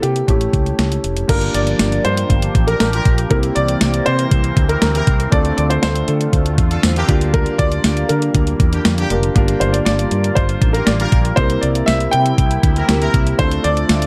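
Lightly reverberant and cut from a longer piece, this moody, nostalgic 1980s-style pop passage at 119 BPM sets a natural-sounding baby grand piano melody with tape echo over a concert grand accompaniment with long sustain, a round, dark fretless electric bass with analog chorus, and a thumpy, overdriven 12-bit drum machine up front with kick, snare, hi-hat, tambourine and crash. A bright, detuned sawtooth pad with slow attack joins in the background at 1.3 seconds, and distant, tight horn stabs with tape echo arrive at 2.7 seconds, all over chords moving through Gm7, C7 and Dm7.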